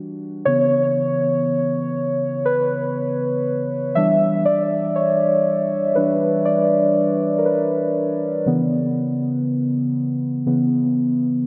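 Moody and longing, this slow R&B excerpt in straight 4/4 features a lone synth keys part, muted and felt-like, playing from C#3 to E5 across the full 11.5 seconds. The keys sound dark and intimate, with a fast attack and decaying tone, sitting up front yet bathed in chorus and a diffuse ambient delay. A lush hall reverb soaks the dreamy mix as the harmony moves from C#m7 to Em7 at 4.0 seconds and returns to C#m7 at 8.5 seconds.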